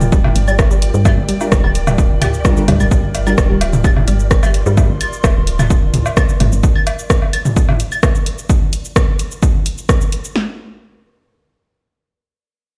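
Up-front, overdriven kick and snare from a punchy analog drum machine drive this hypnotic, cool minimal techno cut in G minor at 129 BPM, alongside its overdriven hi-hat, rim click and shaker, a soft, dark FM bass with sidechain pumping, layered electronic toms, woodblock and claves through tape echo, a squelchy, detuned blip pluck riff with phaser and dub echo that stops at 4.7 seconds, a crisp, very quiet wavetable chord stab from 1.4 to 3.3 seconds, a bright pulsing gated texture and a warbling, nostalgic lo-fi pad in the background, all circling a Gm7 chord until the drop ends at 10.4 seconds, with the whole mix heard through a big sound system in a bare stone room.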